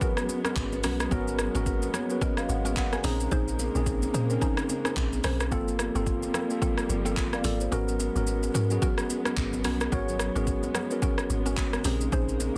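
A swung 109 BPM amapiano groove in 4/4 is driven by an overdriven, up-front deep house kit of kick, handclaps, hi-hat, rim click and shaker, with very quiet, high-tuned congas ringing close and dry, and the kick drops out at 7.7 s. A round, percussive log drum bass enters at 0.6 s beneath a mellow tine electric piano that plays a short fill at 1.7 s, while a dark, lush bowed string section sustains pumping chords and a woody, mallet-like synth pluck stabs in the background through chorus, phaser and tape echo. Set in G# dorian over minor eleventh chords, this late-night, soulful fragment sits in light digital reverb with a dense, heavily limited modern master.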